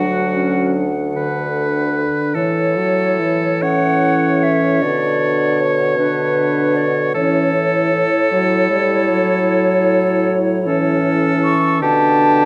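A silver concert flute carries the melody, its airy, metallic straight tone and crisp attack sounding slightly distant as it moves between B4 and C#6. Beneath it, a bright oboe with light vibrato shapes a second line, while a French horn and a clarinet, the latter set back and roomy, fill in the accompaniment. A mellow bassoon with a vintage colour anchors the bass from D2 to B2. This is a slow, tender romantic movement for wind quintet in 12/8 at 51 dotted-quarter beats per minute, played with rubato, and the harmony passes from D through A and Bmadd9 before arriving on G/B at 11.8 seconds. Close, detailed microphones sit within a moderate recital hall reverb, and the 12.5-second passage is cut from a longer piece, all five parts sounding throughout.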